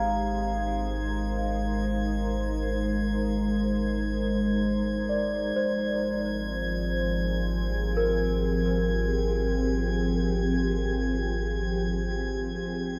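This ambient piece floats in free time in Ab major, holding a weightless, warm mood across the 13 seconds cut from a longer work. A glassy FM pad sits up front with sustained chords, its slow attack and long release softened by ensemble chorus and its own reverb, giving a dark, ethereal bed. Beneath it, a round sine sub bass holds a deep Ab, while a large celesta plays delicate, bell-like arpeggios whose bright, sweet ringing comes from hard felt hammers, close-miked and trailed by tape echo. High above, a faint texture of glass harmonics drifts on calm overtones, chorused and reverberant. The whole production is shadowy and steeped in a huge, wet reverb with a 7.6-second tail, so every part seems suspended in one slow-moving cloud of sound.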